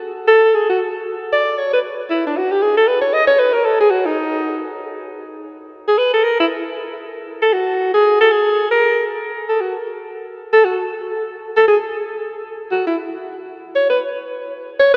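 Playful and warm, this fragment of a longer jazz piece moves at a brisk 232 BPM in 4/4 with a swung eighth-note feel, tuned to A4 = 442 Hz. A lone alto saxophone carries everything from 0.3 seconds to the close at 15.0 seconds, staying in the range from D4 to D#5. Its tone is breathy and subtoned, with scooped notes and a vintage jazz character, and it sits up front in the sound. The playing sounds like it was captured in a church or concert hall, and a heavy cathedral reverb with a long 4.5-second tail lets each phrase bloom into the space. At 9.3 seconds the music moves into a new section, where the saxophone continues as the featured solo voice through to the end.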